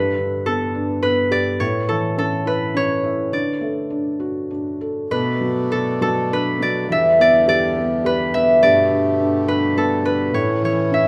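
This children's lullaby drifts gently in 3/4 at 104 BPM with a sleepy, rubato feel. A ringing, fingerpicked concert harp carries the melody up front over a soft, mellow felt-muted upright piano whose intimate accompaniment runs throughout the 11.1-second excerpt. At 5.1 seconds a reedy, nasal hand-pumped harmonium enters with breathing sustained chords as the harmony moves through Bm7, Em7 and Gadd9 before settling on A, all under a light reverb.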